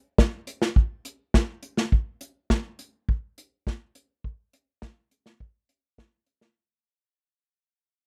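A straight 4/4 rock groove on an acoustic drum kit played with bundle sticks enters at 0.2 seconds, its hi-hat, punchy kick and medium-tuned snare sitting up front with an airy, polished small-room character in a dry, close 1970s-style studio sound, giving this brief, wistful yet upbeat fragment of a longer piece a lift as it fades out throughout.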